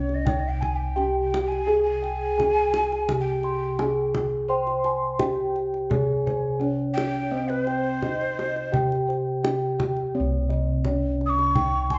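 A breathy, hollow bansuri sits up front in this shimmering, hypnotic cut from a longer Javanese gamelan piece in C pelog, moving at a straight 85 BPM in 4/4, its bamboo tone carrying vibrato and tongued notes as it plays the second line. Beneath it, a bronze metallophone struck with padded disc mallets carries the melody with a mellow, ringing voice, while bossed gongs in the bass sound round, beating and close, with a boxy small-room character. A tight, acoustic kendang supplies the percussion, and a second set of bossed gongs plays soft arpeggios with padded beaters. From 4.5 to 10.1 seconds, another metallophone joins with arpeggios whose paired tuning produces shimmering beats. The band plays live in one room, bathed in a wet large studio reverb, with a dark, rolled-off top end that keeps the bronze textures soft-edged.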